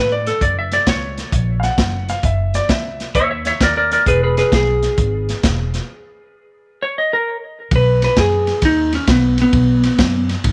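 A swung shuffle in four drives this soulful, rollicking electric blues excerpt, built on a gritty, saturated breakbeat kit with dark cymbals and a tight kick sitting up front beside a thumpy, woody pizzicato upright bass. A clean lap steel guitar played with fingerpicks and slide carries the melody, while a polished upright piano adds a brief, long-sustaining second line from 1.6 to 3.1 seconds. After a break at 5.9 seconds, the lap steel takes a slide solo from 7.7 seconds, framed by light reverb and a small room ambience.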